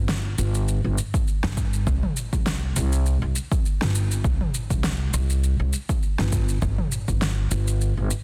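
Organic downtempo at 101 BPM in 4/4, with a gentle 16th-note swing and a hypnotic, mystical mood, tuned slightly sharp to A4 = 445 Hz. A woody, growly upright bass on steel strings is plucked up front from the start, pumping under sidechain compression, while an overdriven deep house kit with shaker, toms and a fat snare sits lower in the mix with studio reverb. A punchy, layered electronic kick, also overdriven and reverberated, enters at 1.1 seconds and drops out at 7.2 seconds, all within a dense, heavily limited modern master cut from a longer piece.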